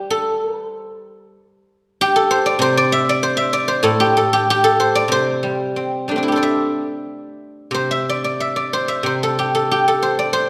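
A solo guzheng, played with fingerpicks and placed up front, rings out with a mellow, silvery tone across a range from A2 to E5 in this serene, flowing Chinese traditional excerpt, its rubato phrasing carried by the lush reverb of a church or concert hall over 10.5 seconds.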